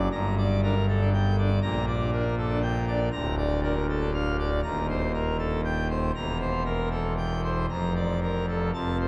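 A classical organ toccata in 3/4 at 119 BPM, this short fragment from a longer piece sounds majestic and jubilant, moving from G minor into Bb major from 3.1 s. A solo pipe organ carries the whole passage on full organ with mixtures, its brilliant, romantically voiced sound placed up front and spanning from a deep D1 to Bb5. The harmony walks through Gm, Gm/Bb, Bb/D, Cm7/Eb and C7/E before settling on Bb/F at 7.7 s, the bass rising through each inverted chord. A wet cathedral reverb with a long 4.7-second decay lets every chord bloom into the space. The production is dark and warm, with vinyl crackle lending it an aged, archival character.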